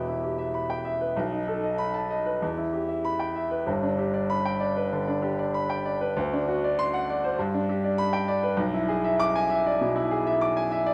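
Rubato 4/4 at 97 BPM drives this stormy, agitated fragment of a classical virtuoso piano study, where a clear, open baby grand with long sustain sits up front, ranging from E1 to D6 through a wet recital-hall reverb while the harmony moves from E minor through B7 and G to D7 before landing on E7/B near 8.6 seconds.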